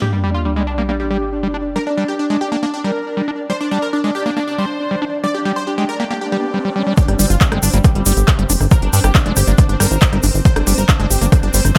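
A straight 4/4 pulse at 138 BPM drives this psychedelic, driving psychedelic trance excerpt in G minor, where an airy, detuned supersaw stab with phaser and dub echo, a pulsing gated texture of soft, chorused sustained chords, and a squelchy, screaming distorted acid line riff all pump against the sidechain over an impact, filter sweeps and a sub drop and riser until 7.0 s, when the drop brings in an overdriven, up-front electronic kick drum, a techno drum kit of handclaps, smooth low-passed hi-hat and rim click, a grainy tube shaker in the background and a funky, plucky analog bass with ring modulation and tube saturation, in a mix touched by light reverb.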